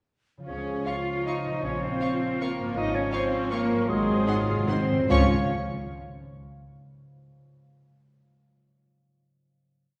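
Elegant and festive, this short classical ballroom waltz in Db major sways in 3/4 with a rubato feel between 141 and 174 BPM, heard from further back in a wet concert hall. A ringing concert harp rolls arpeggiated chords from 0.4 seconds. From 0.5 seconds, a pure wooden flute doubles the tune in unison and sixths, with a distant clarinet, a warm oboe and a dark bassoon alongside, while violas add a very quiet counter-melody and French horns and cellos double the tune at the octave over a double bass section bowing on the beats. Lush violin sections carry the melody and after-beat chords from 0.9 seconds, and hard-mallet timpani enter with a fill at 3.9 seconds that leads through Ab7 to a final Db chord.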